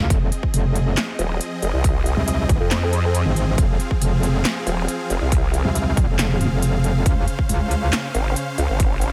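Heavy wobble dubstep in a half-time feel, this chaotic, weighty passage is cut from a longer piece. A metallic, aggressive FM wobble bass sits up front from the opening, saturated and thickened with chorus and overdrive, and it stops at 7.9 seconds. At 1.2 seconds a second wobble bass joins, its nasal, resonant formant-filtered tone giving a vowel-like sweep, also driven and compressed. Alongside, huge, lush detuned supersaw chords sustain bright sawtooth harmony that pumps with sidechain, moving from Fm7 to Dbmaj7 at 7.1 seconds. A punchy, overdriven electronic kick hits hard, while a layered big-room kit adds a punchy snare, crisp hi-hats and handclaps with a tape-tinged character re-recorded in a large room, all set in a digital ambience.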